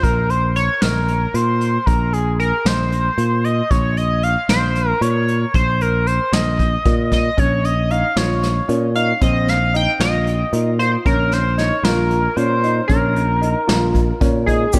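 A light reverb frames this tense, brooding progressive instrumental in Bb minor, where an edgy, tearing sync lead with chorus and digital delay carries the melody in a straight 7/8 at 229 BPM over a growly, up-front picked electric bass and a vintage brush drum kit with a punchy kick and rolled-off top, a dark, mellow concert grand adds echoing arpeggios from 7.4 s, and a very quiet cup-muted trombone and a grainy tube shaker appear only in the closing moments of this cut from a longer piece.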